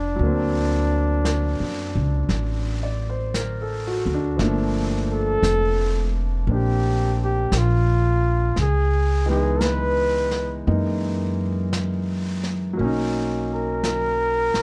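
Intimate and romantic, this slow jazz ballad excerpt moves at 57 BPM in a swung 4/4, its chords drifting from D7b13 through Gm9 and Gb13 before settling on Bmaj9 at 12.8 seconds. A veiled, breathy trumpet in a bucket mute carries the melody up front with light vibrato, while a clear grand piano with long sustain accompanies and a woody pizzicato upright bass sits close beneath. Soft brushed snare and hi-hat enter at 0.2 seconds, all set in light reverb within a dark production.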